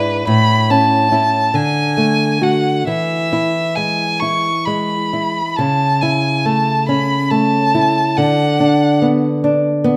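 Violin and nylon-string guitar begin together in this tender romantic duo, cut from a longer piece and moving in 6/8 with uneven, rubato beats. The bowed violin carries the melody, with a rich, smooth tone, even phrasing and vibrato. The fingerpicked guitar supplies accompaniment with a small, warm acoustic sound, and both instruments sit up front. The harmony moves from A through D and E to A/C# and then Bm/D, all in a moderate recital hall reverb. The violin falls away at 9.0 seconds, and the guitar carries on alone until the cut at 10.0 seconds.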